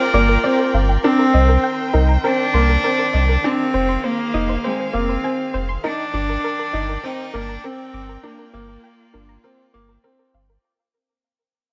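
This short cut from a longer piano and strings electronica piece opens at 0.0 s with an up-front, nasal, earthy cello melody, a distant string quartet holding bowed chords with vibrato and portamento, and a grand piano riff of natural tone and short sustain. The cello and piano both carry tape echo, and the mood is intimate and hypnotic at 100 BPM in a straight 4/4. From 0.1 s a deep, round sub bass sits up front with a mellow, sustained body, while a soft, dark pluck plays arpeggios in the background, coloured by chorus and tape echo. The harmony moves from Gm7 through Cm7, Fm7 and Ebmaj7/G before returning to Gm7 at 8.2 s. The whole passage plays as a drop that begins fading out at 1.0 s and continues to fade until 10.6 s. A moderate echo chamber reverb and a small-room ambience give the mix a close, chamber-like feel.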